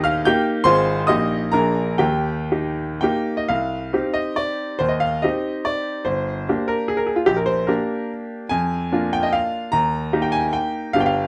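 A brilliant, up-front grand piano plays alone in this graceful, rustic romantic dance in 3/4, its dotted rhythms shaped with rubato as the tempo moves between 110 and 162 BPM. It opens in E-flat major and turns to C minor at 3.5 seconds, wandering through G minor before settling back on E-flat, with the piano tuned to A4 = 439 Hz. The natural sound sits in a moderate studio reverb, and the passage is cut from a longer piece.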